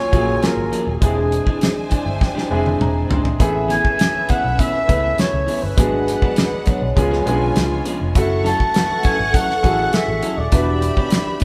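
Lush, smooth 1970s-style soul at 101 BPM that settles into A major at 3.4 s. From the start, a breathy, whispered flugelhorn carries the melody with slapback echo over a bowed, woody string section, a clear concert grand piano that adds a fill before 3.4 s, a slightly broken-up electric guitar riff in the background, a round, foam-muted fingered bass and a dry, up-front 70s drum kit with a fat snare. A very quiet vibraphone with soft mallets rings from 3.4 s to 10.8 s, all captured as a band playing live in one large studio room.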